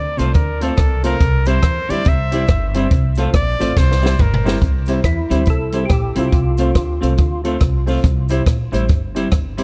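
A punchy, close-miked trumpet carries the melody with light vibrato and tape echo from the start of this cheerful, upbeat ska excerpt at 140 BPM in C mixolydian, swinging its eighths over a dry, up-front cocktail kit with a high-tuned snare, whose fill closes the trumpet's solo at 4.6 seconds. A thumpy, woody upright bass sits beside the kit, while a dark, hollow-bodied semi-hollow guitar, mellow short-sustain piano stabs and a very quiet, slightly broken-up guitar riff fill out the groove, with a grainy, distant cabasa far in the background. At 5.1 seconds a fat, percussive tonewheel organ with key click, chorus vibrato, slow rotary speaker and tape echo takes a brief melodic turn, all within a studio ambience.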